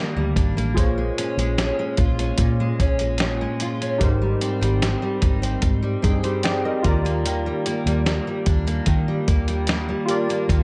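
Indie bedroom pop at a relaxed 74 BPM in Eb major, this hazy, nostalgic cut from a longer piece opens on an up-front, full-bodied picked steel-string acoustic guitar with audible finger squeak and a subtle chorus and vibrato sheen, soon joined by a dark, round, foam-muted fingered electric bass. A gritty, compressed sampler-style drum kit with a thumpy kick and medium-tuned snare sits up front, while warbling, detuned lo-fi synth keys enter at 0.7 seconds with chorus and cassette-tape color and add a brief fill from 6.0 to 7.3 seconds. The chords move from Ebmaj7 through Bbm7 and Abmaj7 back to Ebmaj7, and the dry, dull-topped mix keeps the mood close and intimate.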